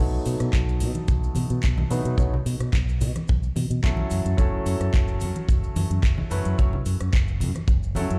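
A brilliant grand piano with audible action noise, pumping, delayed and swept by a low-pass filter, plays B7 and F#m7 chords over a punchy, up-front fingered electric bass with an envelope filter to open this sunny, feel-good nu-disco piece at 109 BPM in B mixolydian; an overdriven, layered electronic house kit of handclaps, metallic hi-hats and rim clicks joins at 0.3 seconds alongside saturated, compressed maracas and congas in the background, and a dry, tight, mid-forward acoustic kick drum drives from 0.5 seconds, with the sound suggesting a big system in a bare room with large studio reverb.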